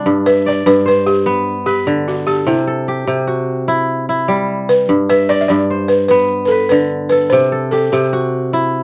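Close, detailed and nearly dry, this joyful, flowing snippet of West African traditional music moves at 99 BPM in a straight 12/8 in G major, where a bright, ringing, up-front kora spins crisp fingerpicked arpeggios over G and C while, from 0.3 seconds, a woody, buzzing balafon played with soft rubber mallets carries a vintage, band-limited melody.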